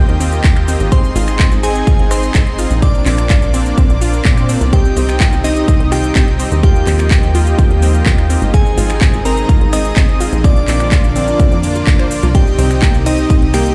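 Progressive house in C minor at 126 BPM, expansive and dreamy, this short cut from a longer piece opens with a glassy, crystalline FM bell carrying the melody over a soft, bright airy lead in the background, smooth detuned supersaw stabs, a punchy, funky wave-folded analog bass and a lush unison pluck arpeggio tucked behind, with chorus and tape echo on the upper synths and sidechain pumping on the bass, stabs, pluck and lead. A punchy, tape-warm electronic kick sits up front beside an overdriven house kit of metallic hats, ride, handclaps, finger snaps and cabasa, while the chords cycle through Ebadd9, Ab, Bb and Cm. A very quiet electronic swell at 4.1 seconds ushers in a breathy, slow-attack pad at 4.7 seconds, and the whole mix rings through a big system in a bare stone room.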